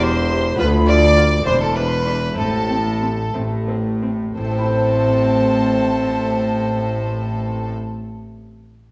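Moving in a straight 6/8 at 56-71 BPM in dotted quarters and slowing through the first 4.4 seconds, this dramatic, driving baroque-style concerto movement in A minor is a short cut from a longer piece, passing over C/E, Bdim/D and E7 to land on Am. An up-front solo violin with a reedy gut-string tone and light vibrato carries the melody, joined by a violin section carrying the melody higher up and a second violin section in the background. A delicate, bright fingerpicked lute and a warm viola section fill out the accompaniment, while a nasal cello section and a studio double bass section hold the bass, all set in a wet recital-hall reverb.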